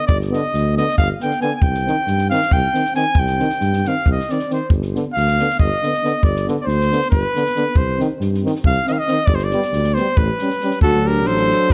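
A clear trumpet with light vibrato and a smooth top leads up front from 0.0 s in this restless, bittersweet Balkan brass band piece in 7/8 at 274 BPM (eighths) in G phrygian dominant, joined by a dark tuba bass, a dry, punchy cocktail drum kit with a high-tuned snare, close-miked trombone accompaniment and warm euphonium in the background, before a vibrato alto saxophone slips in behind as a second line at 10.8 s while the chords move from G and Cm through A7 to D, set in light reverb within a dark production.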